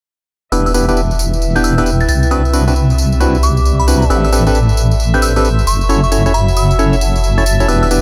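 This moody, skippy two-step UK garage excerpt swings its sixteenths, with a deep, wobbling sawtooth-and-sine bass sitting up front while hollow organ stabs and a glassy FM bell melody in the background trail off into dub echo. A biting, earthy chamber violin section holds distant chords under a filter sweep, and a nostalgic, lo-fi tape-like pad warbles behind, all over an overdriven electronic tambourine. The chords move from Em7 through Cmaj9#11 and Am11 to F#m7 in an echo-heavy mix with light digital ambience.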